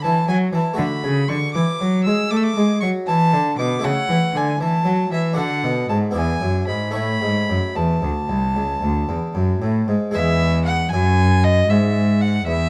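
A serene, flowing baroque-style sonata movement in A major, with a reedy gut-string violin singing the melody in light vibrato over a brilliant Italian-style harpsichord with octave strings and a close, up-front cello bass, unfolding in a rubato 12/8 at 78 BPM with light reverb and a dark production, heard as a 12.7-second cut from a longer piece.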